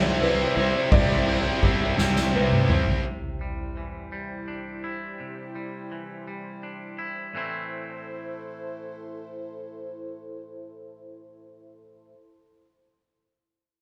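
Melancholic and cathartic, this post-rock passage is cut from a longer piece and moves at a slow 56 BPM in 6/8 in A minor, played by a band live in one room with a moderate studio reverb. It opens on a Cadd9 chord with a full ensemble: a tight, bright distorted guitar and a compressed overdriven guitar in the background share a riff, a round fuzz-laden fingered bass holds a low C2, and a felt-muted upright piano adds intimate arpeggios with audible action noise. Up front, a soft-mallet drum kit with dark cymbals and a boomy kick plays a fill from 2.0 to 3.1 seconds, after which the drums, guitars, bass and piano fall away. From 3.1 seconds a clean, twangy electric guitar carries on with picked arpeggios over a swirling phased analog pad. The pad's detuned sawtooth chords, shaped by chorus and a moving notch, drift and evolve with a slow attack as the harmony settles on A minor at 7.3 seconds.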